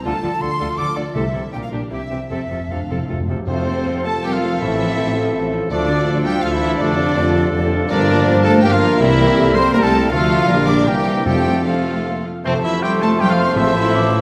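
Classical romantic orchestral movement, dramatic and urgent, in a fast 3/4 at 150-166 BPM with rubato in F major, cut from a longer piece. A dark, expressive violin section with portamento carries the melody over a lush string bed of a second violin section, a very quiet viola section, a rich cello section and a smooth double bass section. An airy flute, clear oboe and clarinet add second lines, a present bassoon accompanies, a mellow horn section holds chords, and a ringing harp plays arpeggios. Calf-headed timpani enter at 1.2 s, and from 3.5 s a tight trombone section, a vintage-toned trumpet playing stabs and a distant tuba join, heard in a reverberant scoring-stage space.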